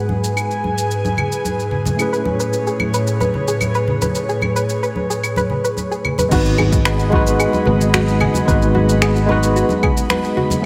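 A moderate, lush hall reverb surrounds this smooth, relaxed sunset chillout clip, cut from a longer piece and moving at 111 BPM in a straight 4/4. A worn, slightly out-of-tune tine electric piano, lightly overdriven with delay and a filter sweep over the opening stretch, carries the accompaniment over an airy, breathy pad whose detuned, full-bodied chords sit up front with chorus. Soft hand congas and an overdriven deep house drum kit of claves, crash cymbal, finger snaps and shaker set the groove. From 2.1 seconds, a soft, round pluck arpeggiates gently in the background with chorus and delay, as the harmony moves from G#m7 to Amaj9. At 6.3 seconds the music returns to G#m7, and a punchy, overdriven electronic kick enters together with a growly, up-front fretless electric bass that sustains a low G#1 until 9.6 seconds.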